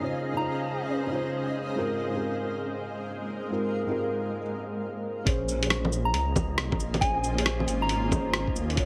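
A felt-muted upright piano, soft and boxy with audible action noise, opens this nocturnal, ghostly future garage cut at 137 BPM in Bb minor, over a blurred granular cloud pad and a breathy, wind-like noise texture in the background, while a pure FM synth bell with chorus, phaser and tape echo briefly sounds its melody at 0.4 seconds. The piano carries 12-bit sampler grit and tape echo, and it and the pad pump with sidechain compression. After a break at 4.4 seconds, a menacing detuned saw bass with a filter swell, a thumpy pitched-down kick and a muffled lo-fi kit of bongos, cabasa, hi-hat and rim click enter at 5.3 seconds in a swung 4/4 groove, with the bell returning under a lush hall reverb.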